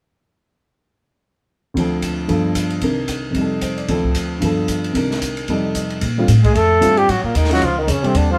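Sophisticated and warm, this brisk small-group swing and bop excerpt in Bb major moves at 226 BPM, with an up-front, natural-sounding baby grand piano comping over an airy jazz kit with dark cymbals and a boomy kick through a repeating Dm7–G9–Cm9–F9 progression. The woody pizzicato upright bass arrives at 6.0 seconds as the harmony turns to Bbmaj9, and at 6.4 seconds a vintage flugelhorn with scooped notes takes the melody while a breathy, whispered tenor saxophone with vibrato carries a second line beneath it. Light reverb gives the sense of a band playing live in one room.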